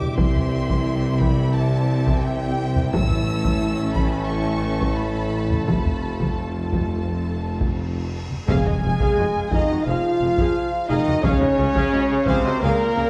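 A vintage, band-limited taiko ensemble struck with hard sticks drives this heroic, dark cinematic excerpt at 87 BPM, as a focused chamber violin section carries the vibrato melody over a lush, distant symphonic violin line and background violas. Shadowy French horns and clear, classical-style trombones hold sustained chords above a bass of tuba, smooth cellos and double basses, all set in a moderate scoring-stage reverb. A huge, bright cymbal swell from 7.6 s lands as an impact at 8.5 s, where the music turns to F phrygian, a mellow close-miked trumpet adds stabs and a very quiet timpani with calf heads sounds briefly.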